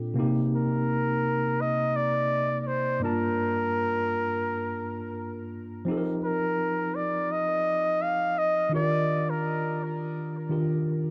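Longing and bittersweet, this short reggae passage, cut from a longer piece, moves at an unhurried 84 BPM in 4/4 with a gentle swing on the sixteenths, set in C dorian and tuned slightly sharp to A4 = 441 Hz. A worn, slightly out-of-tune tine electric piano carries the accompaniment from the start to 11.1 seconds, its lightly overdriven tone coming through built-in speakers with a slapback echo and sitting up front. A warm flugelhorn takes the solo melody from 0.6 to 10.0 seconds, playing in a jazz style with soft attacks, scooped notes and vibrato, trailed by tape echo. The harmony moves through Cm7, Gm7, F7sus4 and Ebmaj7 across a single section. The sound is a dry, close 1970s-style studio recording with a moderate booth ambience, both parts near and intimate.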